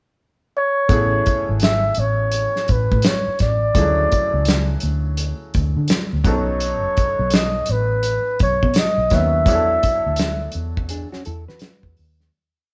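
A laid-back 4/4 groove at 84 BPM, swung on the sixteenths, carries this short, complete R&B and neo-soul piece in A major, with a smooth, soulful mood. The breathy flugelhorn opens with a pickup at 0.6 s and leads up front in a jazz style, with light vibrato, scooped notes and a motif-based melody built from sung-like phrases. At 0.9 s the band enters. The up-front soul drum kit plays a neo-soul beat with ghost notes on a medium-tuned snare and tight kick. A round, foam-muted fingered bass adds punch with chromatic approach notes, and a brilliant, slightly worn grand piano holds rootless chords with grace notes. The harmony moves through Amaj7, Dmaj9#11, B9 and E9sus4 in a moderate stone room that sounds like a band playing live together. As the track fades out, a dark, clean hollow-body jazz guitar slips in at 10.9 s with short fills in fourths.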